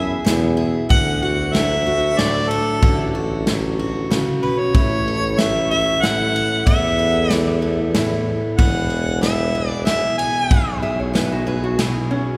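A warm, roomy harmonica with a jazz-tinged vibrato carries the melody from the start over bright, full-bodied picked dreadnought acoustic guitar and a clear, vibrato-touched tuba bass, joined at 0.3 s by a natural country drum kit with a punchy kick and medium-tuned snare, moving through E, D, A5 and back to E in this sunny, down-home honky-tonk and classic country tune in 3/4 at 94 BPM cut from a longer piece, all bathed in a wet cathedral reverb, until a nasal, metallic lap resonator guitar played with slide and fingerpicks steps up front at 10.8 s as the harmonica stops.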